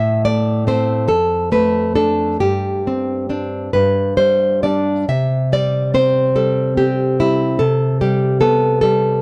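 A slow, rubato 6/8 sway of 44-50 BPM in dotted quarters carries this tender, nostalgic romantic piece for solo classical guitar, cut from a longer work. The fingerpicked nylon-string guitar sits up front with a bright, acoustic tone and audible finger squeak, ranging from F2 to E5 as it moves from Am through Dm/F, Gsus4 and G5 to C5, settling on G/C at 7.6 seconds. The sound is dry and close, like a 1970s studio recording, with a light touch of reverb.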